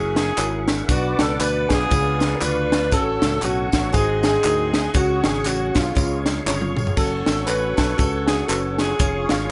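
A soulful, fervent uptempo gospel excerpt in F# harmonic minor at 118 BPM opens with a warm saxophone section carrying the melody with vibrato beside a clear grand piano set in the background. A bell-like tine electric piano, a reedy tonewheel organ with key click, slow rotary speaker and chorus vibrato, and a growly, punchy fingered bass fill out the harmony over swung eighths. From 0.2 seconds a crisp acoustic drum kit sits up front with a high-tuned snare and tight kick, joined by egg shaker and group handclaps, with a drum fill at 6.5 seconds, all in a rough home demo mix with light reverb and small room ambience that rolls off above 11.0 kHz.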